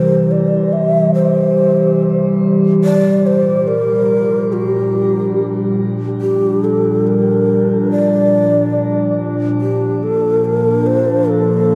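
From the first second, a breathy, hollow shakuhachi with tape echo and shimmer carries the melody over a warbling, nostalgic tape-like pad whose detuned, dark chords move from C to Gm7 to Bbmaj7 under a filter sweep, all bathed in a cathedral-like reverb in this weightless ambient passage at 71 BPM, cut from a longer piece.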